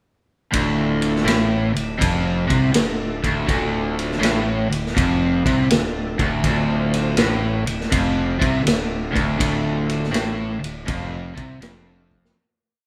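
A crunchy, double-tracked overdriven guitar drives a single-note riff in D minor at 81 BPM with a swung feel, doubled by a growly fuzz bass walking beneath it, while punchy vintage drums with dark cymbals hold a big rock groove and a thick, gritty tonewheel organ pushes rootless chords through chorus vibrato and a slow rotary speaker in the background, giving this brooding blues rock and southern rock piece the sound of a band playing live in one room before it fades out from 9.4 seconds and closes on a drum fill at 12.0 seconds.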